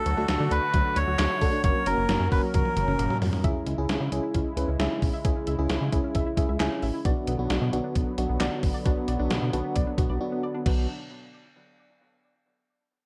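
A gated 80s digital drum machine sits up front in this driving, nocturnal synth-pop excerpt, its thumpy kick and gated reverb snare joined by hi-hat, handclaps, toms and crash cymbal, with a drum fill arriving at 2.5 seconds. A reedy, breathy melodica with tape echo also sits up front, carrying the melody in a nasal tone until 3.2 seconds. Underneath, a glossy, dark chorused synth bass holds the low end, while an FM electric piano with tremolo supplies mellow accompaniment and takes a short fill at 6.1 seconds. In the background, a smooth, detuned analog pad with chorus sustains chords, and a soft, round pluck adds gentle arpeggios with chorus and tape echo. The harmony moves from D to F#, then to C#m and Bm, and a brief break comes near the end before the clip cuts off, the whole mix set in light reverb.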